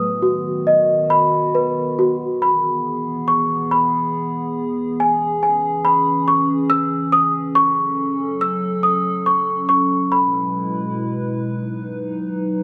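A moderate recital hall reverb surrounds this sleepy, gentle lullaby excerpt in E major, drifting in 6/8 at a rubato 46 BPM. Up front, a worn celesta carries the melody with a bell-like, delicate tone from soft felt hammers, sounding sweet and slightly out of tune with a boxy, small-room color. Beneath it, a warbly tape-like pad holds sustained chords with slow attacks and long releases, its detuned square and triangle waves, sub octave, chorus and built-in reverb giving a nostalgic, lo-fi glow until it ends at 12.6 seconds.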